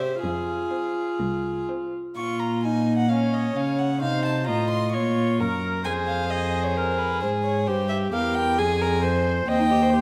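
Quick, stormy classical-period string quartet movement in Bb minor at 131 BPM with a rubato feel, where an airy, nasal first violin carries the melody high above a rich second violin line and a lightly vibrated viola accompaniment, all in period-style gut-string tone, while a dark, up-front cello anchors the bass, the whole dramatic excerpt moving through Fm, Bbm and an Edim shading under a moderate scoring-stage reverb.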